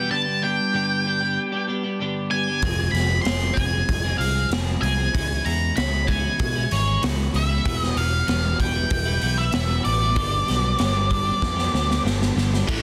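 A straight 4/4 pulse at 95 BPM drives this dark, cathartic alternative rock excerpt, which opens with a dark, fuzzed-out octave lead guitar carrying the melody over bright, twangy, compressed arpeggios from a clean twelve-string electric guitar, moving through G, Fm, C#m and Em. At 2.6 seconds a round, amped picked bass comes in alongside an up-front, gritty, saturated garage kit with a punchy kick and a pumping stone-room sound, and a drum fill at 11.4 seconds leads into a thick, double-tracked fuzz guitar riff at 12.7 seconds, just as this fragment of a longer piece cuts off. The sound is dense and heavily limited, with a light touch of small-room reverb.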